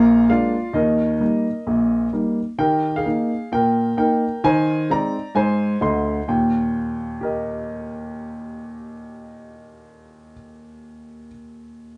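This is stride-piano jazz, an exuberant, swinging 12-second cut from a longer piece, set in Eb major at 130 BPM in 4/4 with a light swing on the eighth notes. A lone upright piano carries everything, ranging from a deep Bb1 in the bass up to C6 in the treble. Its tone is clear and woody, with an intimate, natural character, and the mechanical action noise of the instrument is plainly audible. The harmony opens on Bb7 before settling onto Eb, moves to Ab over an Eb bass at 4.4 seconds, and returns home to Eb at 6.3 seconds. The piano sits in a wet studio ambience with a short half-second decay, and it is heard from further back in the room with a softened, rolled-off top end.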